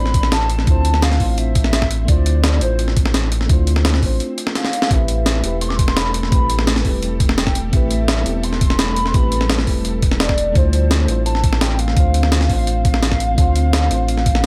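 Soulful, rolling liquid drum and bass at 170 BPM, cut from a longer piece, where a hollow, woody clarinet-like synth lead with vibrato, lush chorus, cassette-tape warble and digital delay carries the melody over a mellow, round FM electric piano, a very quiet ethereal pad, a deep sine-and-triangle sub bass with octave, a gritty, up-front breakbeat kit with a high-tuned snare and a thumpy compressed kick re-recorded in a small room, moving from Dm9 to Am9 and back with a brief break from about 4.2 seconds and a drum fill at 4.6 seconds.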